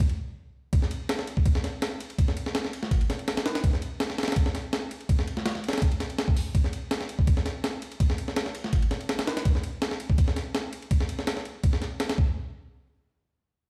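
This drum and bass fragment opens straight onto a breakbeat drum kit with a sampler-style character, setting a dark, nostalgic mood. The kit sits up front, compressed and gritty, with a thumpy kick and a high-tuned snare cutting through, while hi-hat and ride cymbal fill out the top. The groove moves in a straight 4/4 feel at a driving pace, with the drums kept at their natural pitch. The sound carries a light reverb and the character of a big sound system played in a bare stone room, giving the hits a hard, echoing edge. The drums run until 12.3 seconds, just before a brief closing section begins at 12.4 seconds.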